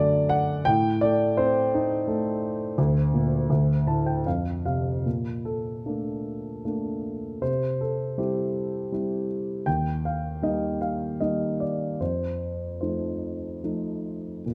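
A dark, intimate recording places a solo grand piano up front in a recital hall with moderate reverb, its mellow, worn tone carrying audible action noise. This calm, peaceful classical piece in 3/4 moves with a lyrical rubato feel, and the piano plays a brief fill from 3.5 to 5.1 seconds before settling into a new section. The excerpt ends at 14.5 seconds, cut from a longer work.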